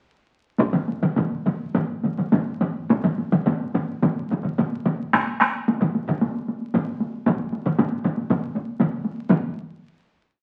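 A solo taiko drum opens the piece at 0.6 seconds, struck with hard sticks and sitting up front in a live room as it sets out a repeating pattern, with three taiko ensemble parts joining almost at once. This short piece of Japanese traditional taiko drumming in 4/4 feels driving and ceremonial, and the whole performance steadily speeds up from start to finish. One ensemble part plays taiko phrases from a small room, while another delivers its phrases close, dry and up front. A third ensemble part, also close and dry, holds to a repeating pattern. A wet studio reverb and the crackle of a very old 78 rpm record wrap the drums in an aged, distant sheen, and the piece closes on a final hit at 9.3 seconds.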